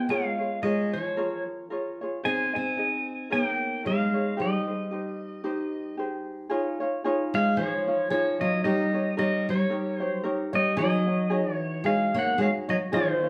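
A wet, roomy sound surrounds this short Hawaiian excerpt, with the band playing live together in a large studio whose reverb gives every note a soft, lingering tail. At a relaxed 112 BPM in 4/4 with a gentle swing on the eighths, the music drifts along in a dreamy mood, starting in Ab major and moving to Db major at 6.5 seconds. Up front, a bright, twangy electric pedal steel guitar carries the melody in a clean, compressed tone, played with fingerpicks, slide and volume swells. Beside it, a fingerpicked steel-string acoustic guitar with fresh strings adds a warm, concert-toned second line lower down. A light, thumb-plucked ukulele fills in the accompaniment, all three parts sounding together from start to finish over a sweet progression that runs from Bbm7 through Abmaj7 to Dbadd9 and Eb7.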